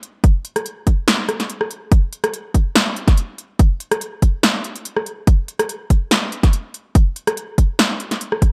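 Lush and euphoric, this short future bass excerpt moves with a half-time feel in 4/4, its sixteenths carrying a light swing. A big-room dance drum kit opens the recording, electronic and layered, with a punchy snare, crisp hi-hats and a rim click sitting up front after being re-recorded in a small room. An electronic kick drum joins at 0.2 seconds, hard-clipped and overdriven, pressing forward as the loudest part of the mix. The two drum parts carry the whole passage through to its close at 8.5 seconds. Light reverb surrounds a dark production, and the clip is cut from a longer piece.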